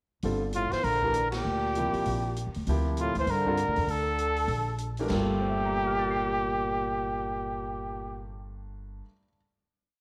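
Hypnotic and searching, this short modal jazz piece swings briskly at 197 BPM in G dorian, opening on a Gm9 chord with a band accent at 1.3 seconds. A present, up-front trumpet carries the melody with vibrato, building motif-based phrases in sentence form, while a raspy, growling trombone shadows it below with a harmony line mostly in sixths, using scooped notes and a soft attack. The grand piano, smooth and vintage in tone, supplies syncopated comping in quartal voicings, and the woody, thumpy upright bass plays a pizzicato two-feel underneath. An open jazz kit with dark cymbals and a boomy kick keeps time on the hi-hat with sticks, sitting low in the balance before dropping out at 5.2 seconds as the group settles onto a final chord. A small room ambience and echo chamber reverb give the ensemble a wet, intimate sheen until the piano rings out last at 9.4 seconds.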